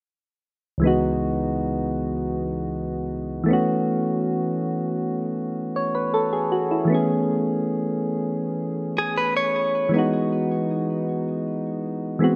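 Soft, round synth keys with an electric-piano character open the music at 0.8 s, their mellow, gently decaying tones coloured by chorus and placed up front. This is a sensual, moody R&B passage in C# minor at 79 BPM in a straight 4/4. The keys move through C#m11, B7sus4 and Amaj7 before settling on Emaj9 at 9.9 s, spanning a broad range from low bass notes to the upper middle. A clean, picked electric guitar, recorded direct and compressed, briefly adds arpeggios from 9.0 s, with spring reverb and delay trailing its notes. A light reverb gives the whole a close, intimate space in this short section cut from a longer piece.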